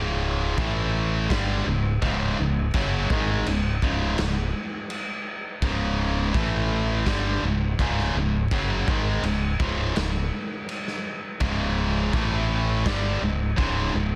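The rhythm sits at a steady 83 BPM in straight 4/4, a dark, angsty stretch of quiet-loud alternative rock in C# minor, cut from a longer piece. A heavy high-gain guitar carries the riff from the very start, double-tracked and picked with a bright, distorted tone, moving between C#5 and A5 power chords. A fingered electric bass plays beneath it, direct and punchy, holding down the low end for the full 14.2 seconds. The raw garage drum kit comes in at 0.6 seconds with crash cymbal, punchy kick and a medium-tuned snare, its saturated sound set in a stone room with a rolled-off top. Guitar and drums sit up front in a dense, heavily limited modern master, with the drums dropping out at 13.7 seconds just before the end.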